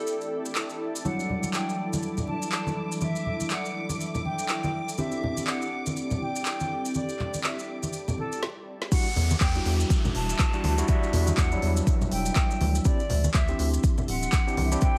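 A deep, up-front electronic kick drum and a rubbery, bouncy square bass arrive at 8.9 s and 9.2 s to power the drop of this late-night, moody deep house excerpt at 122 BPM in E minor, swung on the 16ths, after a filter sweep gives way to a short break and drum fill, with a downlifter sounding as the drop lands. From 1.0 s an airy, distant silver concert flute carries the melody through dub echo, taking over from a brief, punchy plucky unison lead, above soft-handed congas, grainy maracas and a deep house drum kit with woody snare, smooth hats, handclaps and crash cymbal. Barky tine electric piano stabs with 12-bit sampler grit and low-pass filtering, a hollow, warbling pad, a cloudy granular pad and a shimmering string machine of violins pump with the sidechain over chords moving between Em9 and D9sus4, wrapped in light reverb and vinyl crackle.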